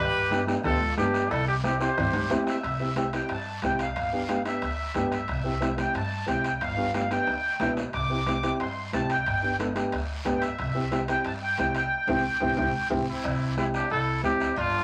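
Sunny and joyful, this 181 BPM cumbia in C major opens with a punchy, roomy trumpet up front that drops out at 2.4 seconds, as the reedy, sweet accordion with light tremolo tuning takes a solo from 2.6 seconds until the trumpet returns at 13.1 seconds, all over a dark, mellow upright piano, a woody pizzicato upright bass, a distant soft-beater bombo, bright high-tuned congas and ringing cowbell and timbales in the background, and a raspy guiro, with drum fills, a band accent and vinyl crackle in a moderate studio ambience.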